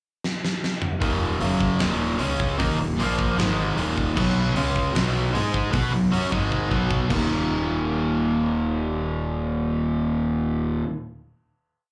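Heard live through a club PA with moderate reverb, this short, aggressive hard rock piece opens with a fill from a huge arena drum kit with a fat snare and punchy kick at 0.2 s, before a crunchy overdriven guitar up front and a bright, compressed distorted guitar in the background drive a power-chord riff over a fuzzy, fingered bass doubling it in eighth notes, and after a second drum fill the guitars and bass ring out a final hit from 7.3 s.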